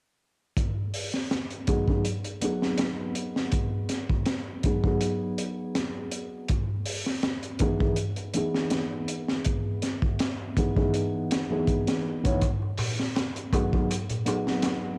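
This melancholic, dark trip hop excerpt has the feel of a home cassette recording, bathed in a moderate spring reverb. It moves at 81 BPM in 4/4 with a light swing on the 16ths, sitting in G# minor with tuning slightly under standard pitch. A crunchy breakbeat drum kit enters at 0.6 s with kick, snare and hi-hat; its sound is saturated and gritty, with a punchy kick, a high-tuned snare and a rolled-off top, placed up front. From 1.7 s a felt-muted upright piano carries the accompaniment between E3 and C#5, its thick-felt tone mellow and intimate, colored by tremolo, 12-bit sampler grit, a low-pass filter and tape echo. The harmony moves from G#m7 to Emaj7 and back. At 12.4 s a metal-shell darbuka joins quietly with crisp, compressed, hard-handed strokes in the closing seconds.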